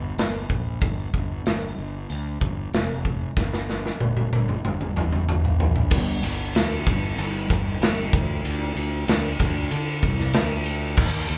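Driving and menacing, this short hard rock excerpt moves at 94 BPM in a straight 4/4, set in G minor with tuning a touch below standard. A fuzz-laden fingered electric bass opens at the very start, its overdriven, growly tone sitting up front as it holds the low end between F1 and D3. A big acoustic rock drum kit joins at 0.2 seconds, with bright cymbals, a medium-tuned snare and a boomy kick, also placed up front, working across crash, hi-hat, ride and toms. A drum fill runs from 3.4 to 5.9 seconds, carrying the music into a new section that continues until the cut at 11.4 seconds. The two players sound like a band performing together in one room, with a light reverb.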